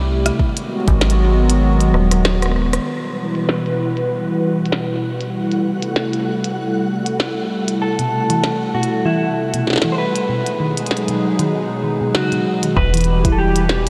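A hollow, flute-like pad sits up front for the whole of this eerie, glitchy IDM excerpt, holding airy sustained chords in E minor that breathe with chorus and sidechain pumping and pass through a long filter sweep from 2.9 to 12.8 seconds. At a swung 97 BPM in 4/4, a glitchy drum kit of clicky hats, a tiny snare and rim clicks patters along with low-pass filtering and tape echo, while a deep electronic kick and a metallic, up-front FM bass appear only at the opening and return together at 12.8 seconds. Early on, the kick drops out for a drum fill and a brief band accent before the middle stretch settles in. A flickering, grainy granular texture hovers quietly in the background through the middle, and at 7.8 seconds a dark, clean electric guitar enters with a fingered melody drenched in lush chorus and delay. Just after, a round, tine-like pluck with 12-bit sampler grit adds gentle arpeggios, and a huge reverb tail soaks the whole mix in a dreamy haze over chords that move from G#m7 through Em, Am7 and C6.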